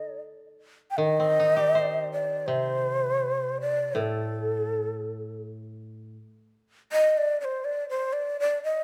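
Calm and austere, this short fragment of Japanese traditional chamber music moves at a rubato 81 BPM in 4/4 in D in the sen scale. A close, up-front, breathy bamboo shakuhachi carries the melody with soft attacks and expressive vibrato, while a dry, woody koto played with fingerpicks accompanies it until 6.1 seconds, all set in a moderate recital-hall reverb.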